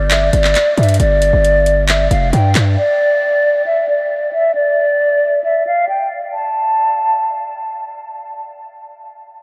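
Dark and hard-hitting, this half-time trap cut at 135 BPM opens with a breathy, hollow concert flute carrying the melody up front, its vibrato and tongued notes filtered and trailed by a diffuse ambient delay while a filter sweep runs across it. A saturated, heavy 808-style bass with a fast attack and a gritty noise layer hits hard beneath it, with an electronic kit of handclaps and metallic hi-hats sitting lower in the mix. Both drop out by 2.8 seconds, leaving the flute alone over a mix soaked in a huge, dreamy reverb until 7.6 seconds.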